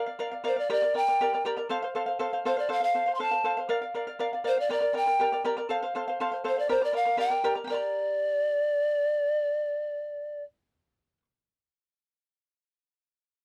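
A straight 2/4 pulse at 120 BPM carries this festive yet wistful Andean folk excerpt in G minor, cut from a longer piece, as a fingerpicked charango opens at 0.0 seconds with shimmering double strings, some doubled at the octave, cycling through Bb, Gm and F. At 0.5 seconds a hollow, airy pan flute enters up front with the melody, its woody tone marked by a crisp, chiffy attack and vibrato, and it carries on until 10.4 seconds. The close, dry 1970s-style studio sound has a touch of light reverb and keeps both acoustic instruments intimate and present.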